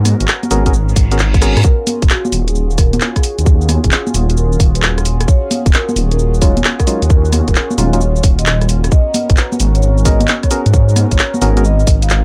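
A swung, skippy two-step garage groove in 4/4 drives this bouncy cut from a longer piece. A garage kit of handclaps, rim clicks, hi-hat, cabasa and congas is soon joined by a tight, up-front electronic kick. Underneath, a deep, rumbling detuned saw bass carries tube saturation and sidechain pumping, while a smooth analog pad holds sustained chords in the background, with chorus and sidechain pumping on it as well. A hollow, organ-like stab punctuates the groove with chorus and delay, appearing briefly early on and returning from 6.4 seconds. A reverse cymbal and a drum fill lead into the vibraphone melody at 1.6 seconds, played with soft mallets and sounding mellow and metallic in the background. The harmony moves between Abm11 and Ebm11 chords, and the production is dark and dry, with little reverb.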